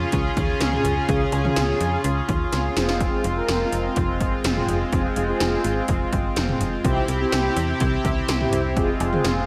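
Synth-pop with a cool, nocturnal mood, this short excerpt sets a shimmering chorused pulse-width pad and mellow, round synth brass over a snappy, metallic FM bass and punchy, overdriven 80s electronic drums with gated snare and toms, a drum fill at 2.5 seconds, and chords moving from Db to Fm and C, all bathed in a dreamy, lush hall reverb.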